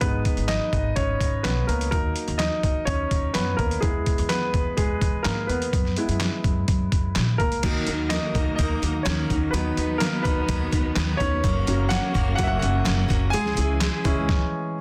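Piano-driven pop at 126 BPM in a straight 4/4, bittersweet and dramatic, taken from a longer piece. A clear, polished baby grand piano sits up front and carries the solo throughout, over a pizzicato upright bass with a woody tone and a trip hop sampler-style drum kit that is pitched down, compressed and overdriven, with a thumpy kick, medium-tuned snare, hi-hat, handclaps and crash cymbal. At 7.6 seconds the music moves into a second section as a picked steel-string acoustic guitar adds a full-bodied riff and a studio string section enters in the background with bowed, sustained chords, soft attacks, vibrato and expressive portamento. The chords shift from G#m through D#m and E to F#7sus4, then D#m, B/D#, F# and C#m in the second half. A stop arrives shortly before the end, from 14.3 to 14.8 seconds. The sound carries light reverb and small room ambience in a dense, heavily limited modern master.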